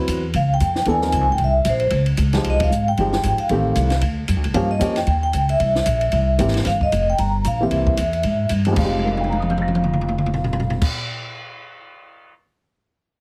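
A dark, mellow baby grand piano with audible action noise and a woody, thumpy pizzicato upright bass with gut strings open this late-night small-group swing and bop fragment, joined at once by a compact cocktail kit with dark cymbals, a high-tuned snare and a punchy kick. A metallic, ringing vibraphone with medium mallets and fast motor vibrato carries the melody; the band hits an accent at 2.6 seconds, and the drums take a fill from 8.9 to 10.8 seconds. Light reverb and heavily compressed radio sound give the recording its broadcast character.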